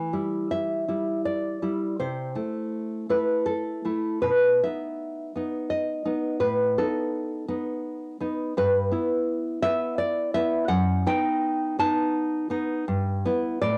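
A nylon-string guitar carries this romantic piece entirely alone, its full-bodied, fingerpicked tone sitting up front and spanning from F#2 up to A5. The mood is passionate yet intimate, moving in 3/4 at around 83 BPM with a rubato feel that lets the time breathe. Rooted in E minor, the harmony travels from Em through Am/C to B and B7/A, then settles back through Em/G and B7/F# before returning to Em/G at 12.9 seconds. A moderate spring reverb adds a gentle halo around the guitar, while a small room ambience and the cassette home recording give the sound a close, homespun character. This 13.8-second passage is cut from a longer piece.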